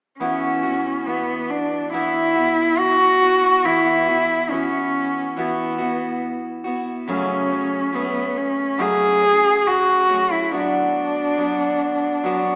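From 0.2 s, a dark, woody bowed cello sings the melody up front with vibrato, while a picked steel-string dreadnought acoustic guitar, finger squeaks and all, accompanies through Esus2, F#madd9 and Bm/F# in this pastoral, nostalgic acoustic folk fragment at 70 BPM in E mixolydian, cut from a longer piece and bathed in a wet concert hall reverb with an AM radio sound.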